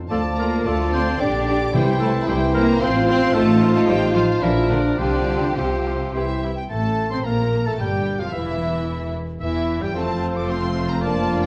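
In a lilting triple metre with elastic rubato, this graceful, spirited classical-period movement for symphony orchestra unfolds as a fragment of a longer work. A bright, lush violin section carries the melody from a distant vantage, while a second violin section with a rich, smooth top enters at 0.7 s in the background. Above and around it, a present oboe, an airy close-miked silver flute and a vintage-toned clarinet weave second lines. Beneath them, a very quiet viola section and a roomy, mellow bassoon fill the accompaniment, French horns hold warm sustained chords, and a clear, focused cello section and an expressive double bass section anchor the bass. Round, soft-mallet timpani sound very quietly between 1.7 and 2.5 s, as the harmony moves from D minor toward the second section at 6.7 s, which turns to A minor and settles on F. The whole orchestra sits in a wet recital-hall reverb, colored by the worn, warbling pitch drift of old cassette tape.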